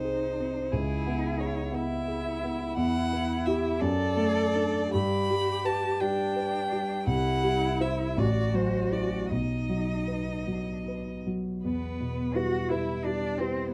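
A short cut from a longer classical piece opens with all three members of a piano trio together: a slow, melancholic and yearning movement in E minor and 6/8, taken with rubato at about 51-60 beats per minute. The up-front violin carries the melody with a rich, smooth tone and light vibrato, the more distant cello sings a second line with expressive vibrato and portamento, and the dark, mellow grand piano supplies accompaniment with deep bass. Moderate studio reverb gives a dark, warm production, and a new section begins at 11.6 seconds as the harmony settles back onto E minor.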